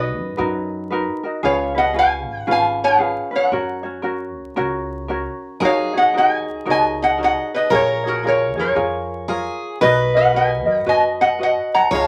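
Hawaiian swing in F# major at 114 BPM, dreamy and sunny, led by an up-front lap resonator guitar whose metallic, nasal slide melody rides over a light fingerpicked ukulele and a woody, thumpy pizzicato upright bass, with a full-bodied picked steel-string acoustic guitar adding a second line from 5.6 seconds, all in a small room with vinyl crackle across this short cut from a longer piece.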